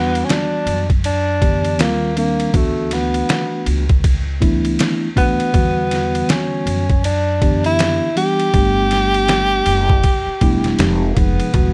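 Nocturnal and mellow, this short jazz-hop cut from a longer hip hop piece puts a breathy tenor saxophone up front, its subtone melody carrying vibrato and scooped notes, over a clean tine electric piano heard through its built-in speakers, a woody pizzicato upright bass, and a gritty, pitched-down, sampler-style drum kit with a thumpy kick and tape-warm compression that enters at 0.2 seconds, all in a lightly reverberant space as the chords drift from Em9 through Gmaj9 to Fm9.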